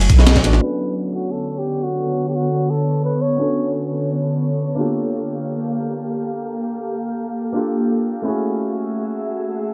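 Rolling and soulful, this liquid drum and bass excerpt in B minor drifts in free time under a dark, low-passed production with moderate plate reverb and a small room ambience. It opens with a band accent at 0.3 seconds, as a saturated, thick sub bass and two breakbeat kits sound together only until about 0.6 seconds: a gritty, pitched-up sampler-style kit with a medium-tuned snare, hi-hat and ride, and a crunchy acoustic kit with a high-tuned snare and dark cymbals. A breathy flugelhorn carries the melody with vibrato and a soft attack through dub echo until 3.7 seconds, close-miked and jazz-like. Underneath, a felt-muted upright piano adds soft, intimate accompaniment through tape echo, while a glassy FM pad holds ethereal chords with ensemble chorus and sidechain pumping, both running to the end. From 0.6 seconds a filter sweep moves across the piano and pad as the chords pass from F#m9 through Bm9 and Gm9 before returning to F#m9 at 8.2 seconds.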